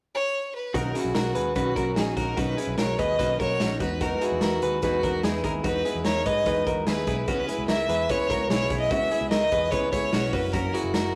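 A smooth, bowed violin with vibrato opens alone at 0.1 s, carrying an up-front melody in this youthful, breezy slice of jangly indie pop. At 0.7 s the band joins: a bright, compressed clean electric guitar picks arpeggios through spring reverb, a full-bodied jumbo acoustic guitar is fingerpicked in the background with audible finger squeak, a dark, foam-muted electric bass holds the low end, and a gritty, saturated garage drum kit pumps with punchy kick, snare and hi-hat. The chords move from Bmaj9 through Emaj7 and C#m7 to F#7, all captured in a rough rehearsal-room recording with a moderate stone-room reverb.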